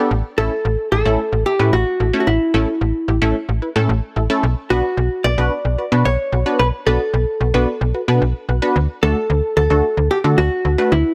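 A punchy, funky polysynth comp opens this synth-pop excerpt, its detuned sawtooth chords shaped by a filter pluck, a moving notch and a chorus effect. A snappy FM bass with a metallic, slap-like attack joins almost at once, sitting up front alongside the synth. From 0.4 seconds a clean, dark hollow-body jazz guitar carries the melody, its picked electric tone compressed and close. The harmony moves from A to B minor at 4.4 seconds and on to D at 8.8 seconds over a straight 4/4 pulse. The mood is melancholic yet driving, and the parts sit within a digital ambience.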